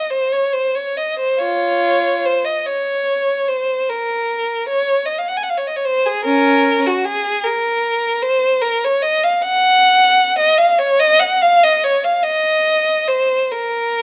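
A classical piece for unaccompanied violin unfolds in a free, expressive rubato, its lilting 6/8 metre stretched and relaxed in a mournful, meditative spirit. A single player carries the whole line, the bowed tone rich and smooth with a vibrato that keeps each note even and singing. The violin sits up front, captured by close, detailed microphones that render the instrument with clarity, while light reverb adds a gentle halo around it. The melody moves within a middle-to-high register, and the solo sounds from the very start through to 14.0 seconds. This is a brief cut from a longer work, offering an introspective moment of lyrical playing.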